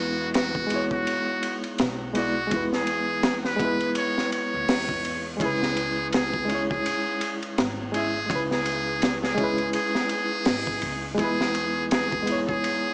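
A muted trumpet and a barky, reedy electric piano open this hypnotic, cinematic trip hop excerpt at 83 BPM in 4/4, with a swung sixteenth-note feel, over an upright bass played pizzicato. The trumpet carries the melody up front with a metal mute, sounding buzzy, thin and brilliant, with light vibrato in a pop style. The electric piano accompanies brightly through its built-in speakers, lightly overdriven and pulsing with fast tremolo and harmonic tremolo. At 0.3 seconds a crunchy breakbeat kit arrives: saturated and gritty with a rolled-off top, dark cymbals, a high-tuned snare, a tight kick, hi-hat and ride. The woody, steel-strung bass sits low in the mix, while the harmony moves from E to C#m7 at 5.4 seconds and back to E at 11.2 seconds. Light reverb, vinyl crackle and a small-speaker sound give the whole track a worn, lo-fi character.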